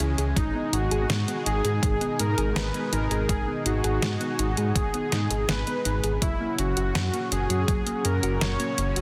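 This nostalgic, nocturnal synthwave excerpt in G# minor at 82 BPM opens with a smooth, airy supersaw melody up front with digital delay, over a chorused analog pad that pumps against the sidechain, a round, tine-like pluck playing arpeggios in the background, and a deep, rumbling detuned saw bass. An overdriven 8-bit drum machine supplies hi-hat and a fat snare, joined at 0.4 s by a thumpy, overdriven electronic kick that drops out at 7.8 s. The harmony rests on G#m before moving to F# at 6.2 s, all within light reverb and a dense, heavily limited modern master.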